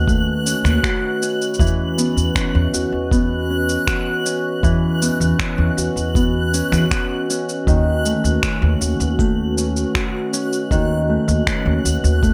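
Pastoral and warm, this short folktronica passage in straight 4/4 rests on a warbling, lo-fi tape-like pad holding dark, detuned sustained chords, while a thumb-plucked Celtic harp rings out arpeggios through tape echo and plate reverb. A woody upright bass plucked on gut strings sits low. From 0.1 s, a muffled, pitched-down electronic kick joins a produced electronic shaker and finger snaps, while high above, a reversed, dreamy granular texture swells on a single bright note, the mix sitting in a moderate studio reverb.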